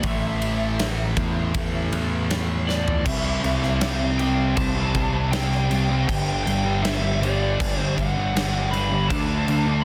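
A steady, straight 80 BPM pulse in 4/4 comes from a huge arena drum kit with a boomy kick, medium-tuned snare, crashes, ride and toms, sitting up front in a big room and turning over with a fill at 2.7 seconds into the second section at 3.1 seconds. This brooding, melancholic stretch of shoegaze-leaning rock and dream pop is cut from a longer piece and is built on a double-tracked, dark fuzz guitar riff, drenched in distortion and lush chorus. Beneath it a bright, growling picked bass adds overdrive, and a shadowy lead guitar through a small cranked amp carries the melody over chords moving from A5 to C, G5 and D5, all in a dense, heavily limited modern master with light studio reverb.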